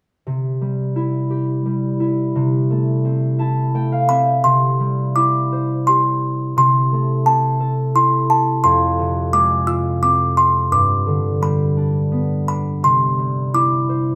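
Children's lullaby in C major at 86 BPM in a rubato 3/4, tender and innocent, where an up-front, thumb-plucked concert harp rings out an acoustic accompaniment from 0.3 s, adds a fill at 3.0 s, and is joined at 4.1 s by a delicate, tinkling music box melody, dark, smooth and slightly out of tune like a large box, over chords that move from C through Fm and G before settling home, all in a moderate studio reverb as if played live in one room, in this fragment cut from a longer piece.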